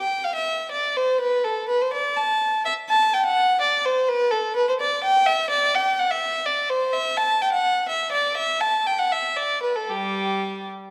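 A moderate concert-hall reverb, lingering about 1.9 seconds, surrounds a single up-front violin in this radiant, serene excerpt of a baroque-style suite movement for unaccompanied violin, set in G major and tuned to A4 = 436 Hz. Played in period style, the bowed gut-string tone sounds rich and reedy, coloured by light vibrato as the line moves between G3 and A5. The 6/8 metre flows at 84 beats per minute in dotted quarters, shaped with a supple rubato, and the violin sounds alone until 10.7 seconds.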